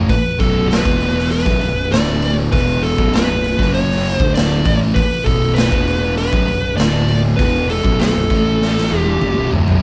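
A saturated, punchy garage drum kit sits up front in this brooding, hypnotic stoner and doom metal excerpt, its kick, snare, hi-hat and toms ringing through a bright stone room that pumps around them before a drum fill from 8.6 to 9.8 seconds. Two thick fuzz guitars churn a riff in the background at 99 BPM in 4/4 with a straight feel in B minor, one tone warm and the other dark, moving through B5, E5, D5, F#5 and A5 power chords with passing B minor chords. A fingered electric bass holds down the low end with an overdriven, round and punchy fuzz tone. Above them, a compressed fuzz lead guitar sits up front with a melody in a high register, its distortion touched by slapback echo. The band plays live together in one room with moderate reverb, giving the short passage a raw, heavy weight.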